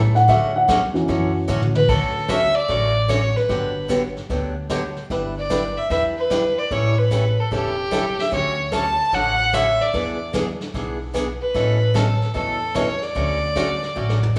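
A swinging 149 BPM 4/4 shuffle drives this cheerful western swing country excerpt in D major, where a dark, mellow upright piano leads the opening until a drum fill at 1.5 s hands over to an earthy, up-front bowed fiddle with light vibrato from 1.8 s, carried over Dmaj7, Gmaj7, A7 and E7 changes by a woody, thumpy pizzicato upright bass, a bright, boxy picked swing acoustic guitar with audible finger squeak, and a vintage brush drum kit with dark cymbals and a punchy kick, all sounding like a band playing live together in one large studio room with a wet reverb.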